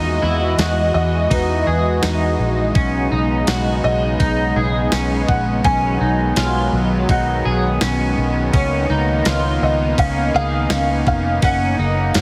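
Dream pop at 83 BPM with a blissful, ethereal mood, built on an Emaj9 to B69, G#m7/B, C#13 and F# progression, where a soft, felt-muted upright piano with audible action noise carries the melody through digital delay over a thick, detuned sawtooth pad with chorus, slightly broken-up twangy guitar arpeggios bathed in lush chorus and delay, and a dark, round, foam-muted bass sitting up front, while a crisp 8-bit drum machine with a thumpy kick, tambourine and ride joins at 0.6 s and a very quiet, bell-like celesta glints between 3.5 and 6.2 s, all in a dry, heavily compressed radio-style sound.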